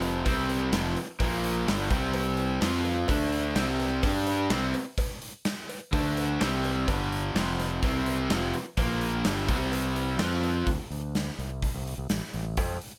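Swaggering and confident, this classic rock cut moves in a straight, steady 4/4. Two overdriven electric guitars play picked riffs up front, one with a bright, cranked stack tone and the other a rawer garage sound, cycling through power chords such as C5, F5, Bb5 and G5. A growling fingered electric bass, overdriven, direct and amped, sits up front beside a gated 80s acoustic drum kit with a punchy kick, medium-tuned snare and hi-hat, polished and airy in a stone room. A dry, metallic cowbell sits in the background, and light reverb surrounds the mix. The guitars stop at 10.7 seconds, leaving bass and drums to carry a brief closing passage that touches A minor before the bass drops out at 12.8 seconds.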